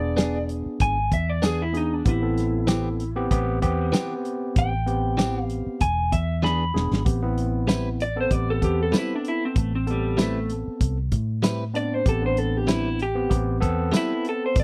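A straight-eighth groove with a light swing on the sixteenths drives this smoky, mournful soul blues fragment, built on a dry, saturated drum kit of hi-hat, tight kick, medium-tuned snare and tambourine in a pumping room, over a dark, round, foam-muted fingered bass. An electric guitar through a small old amp carries the slightly broken-up, lo-fi melody, while a barky, overdriven tine electric piano comps on E7 and Am9 chords and a bright, direct-recorded clean electric guitar adds picked stabs. A drum fill at 6.4 seconds leads into a clean electric guitar solo from 7.1 seconds to the end.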